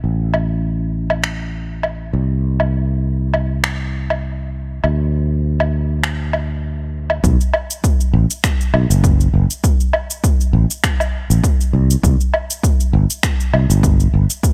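A growly, bright fretless electric bass opens this wistful, smooth sunset chillout fragment, sustaining up front in a gently swung groove. From 0.3 seconds an overdriven electronic woodblock, finger snaps and cabasa join in a small room, and at 7.2 seconds a punchy, overdriven electronic kick drum arrives to give the second half more weight.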